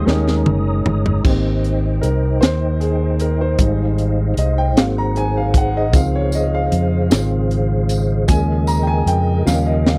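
A dry, close studio sound in a 1970s style frames this short cut from a slow, uplifting gospel piece in Ab major, moving in a straight 6/8 at 51 BPM. A very quiet, mellow saxophone section sounds a brief melody only in the first 0.5 seconds, while the tight funk drum kit opens with a fill, its high-tuned snare and punchy kick sitting up front. From 1.2 seconds the woody, intimate upright piano takes a solo, its long sustain and audible action noise clearly present. Beneath it, a soft, flute-like tonewheel organ holds sustained chords through a fast rotary speaker with chorus vibrato and key click, and a dark, round fingered electric bass anchors the low end. A jingly, saturated tambourine joins at 5.9 seconds as the jubilant harmony moves from Abmaj7 through Dbmaj7 to a closing Eb7, with a last drum fill at the end.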